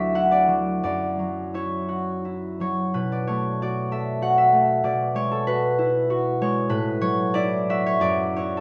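Mysterious and wistful, this short fragment of a classical solo harp piece drifts in rubato 3/4 at around 81-100 BPM in B dorian, its up-front, fingerpicked concert harp ringing from D2 to F#5 through chords such as Dadd9, Bm9, Eadd9/B and A69 before settling on F#7sus4 at 8.0 seconds, all bathed in a stone room reverb of 1.2 seconds.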